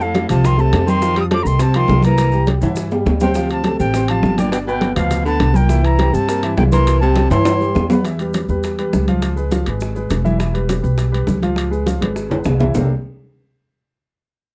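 A lively, danceable Afro-Cuban jazz groove at 205 BPM in straight 4/4 drives this short cut from a longer piece, anchored by an up-front, woody, thumpy pizzicato upright bass on gut strings, with bright congas, tight high-tuned bongos and grainy maracas sitting in the background, ringing metal-shell timbales in the mix, and drum fills punctuating the groove. A breathy, reedy silver flute with vibrato and a crisp attack carries the melody over a mellow baritone saxophone second line until 7.9 seconds, while an intimate grand piano with audible action noise and short sustain comps through chords moving from F7 and C7 to alternating Em and Db7. The dry, close 1970s-style studio sound has light reverb and a vintage character.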